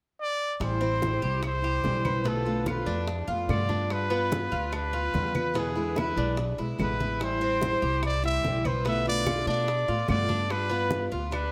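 A breathy, close-miked trumpet opens this sultry Cuban son and guajira excerpt at 0.2 seconds, its whispered, intimate melody carrying a gentle vibrato and soft attack up front in A minor at 146 BPM. At 0.6 seconds the band joins: a dark, thumpy upright bass with gut strings plucked pizzicato sits up front, while a picked steel-string acoustic guitar supplies concert-style accompaniment. The Cuban tres enters at 0.8 seconds with metallic arpeggios on double strings, some octave-doubled. Low-tuned congas with a thick skin and soft hands and woody claves sit in the background, while tight, high-tuned bongos struck with hard hands stay very quiet. The harmony cycles through Am9, Bm7b5, G7 and E7 under light reverb, giving the straight 4/4 groove an easy, intimate glow.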